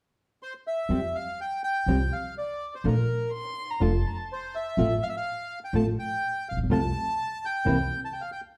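Nostalgic and playful, this short tango excerpt moves at 124 BPM in 4/4 with a rubato feel, settled in F major. A reedy, dark bandoneon carries the melody up front from 0.4 seconds, joined at 0.9 seconds by a fingerpicked nylon-string guitar, full-bodied and deep in classical character with audible finger squeak, and a pizzicato upright bass that sounds woody and thumpy on steel strings. Briefly, from 3.3 to 4.2 seconds, a single bowed violin adds a high second line, expressive with vibrato, portamento and a soft attack, its tone warm and trailed by tape echo. The harmony drifts from Fsus2 through Bbmaj7, F/A and F/C before resting on C. A wet studio reverb places the ensemble further back in the room, giving the playing a gentle sense of space as this fragment of a longer piece unfolds.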